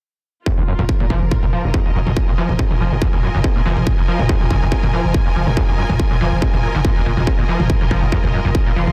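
A straight, driving 141 BPM pulse in 4/4 anchors this relentless, hypnotic peak-time techno fragment in F phrygian, where an up-front, distorted, layered electronic kick and pumping background electronic toms from 0.8 seconds sit beneath a screaming, squelchy sawtooth acid riff with distortion, chorus, delay and a filter sweep, a growling, buzzy 808-style bass holding F1 through overdrive and a low-pass filter, and a lush, bowed studio string section with vibrato floating high above, all in a dry, dense, heavily limited mix.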